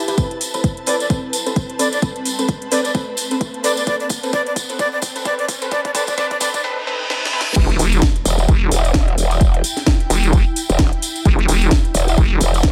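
Bass house with an aggressive, gritty mood and a swung 4/4 groove, cut from a longer piece. It opens on a build-up: a bold, detuned orchestra-hit-like synth stab with a filter sweep and digital delay rides over an ethereal, airy pad in the background, while a punchy, up-front electronic kick and a house kit with a cracking snare and metallic hats roll through drum fills, joined by a jingly, distant tambourine. A breathy, reedy jazz flute with vibrato and a crisp chiff carries the melody from 0.9 s over an Amadd9 chord, as a riser and reverse cymbal climb beneath. At 7.6 s the drop lands on E minor with an impact, and a nasal, saturated vowel-sweep wobble bass takes over, soon joined by a detuned, growling bass, both pumping against the kick. The mix has light reverb and digital ambience.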